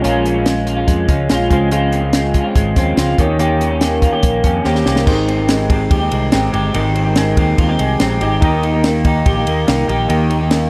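A straight 4/4 pulse at 143 BPM drives this bright, youthful jangly indie pop clip in Ab major, where a punchy, up-front cocktail kit with a high-tuned snare and dark cymbals fills at 4.7 seconds, a round, dark fretless bass holds the low end, a slightly broken-up guitar through a small old amp picks chorused, delayed arpeggios up front, a clean, compressed semi-hollow guitar fingers the accompaniment, and a barky, lightly overdriven reed electric piano adds fills from the background, all in a moderate club reverb as the chords move from Bbm7 to Abmaj7.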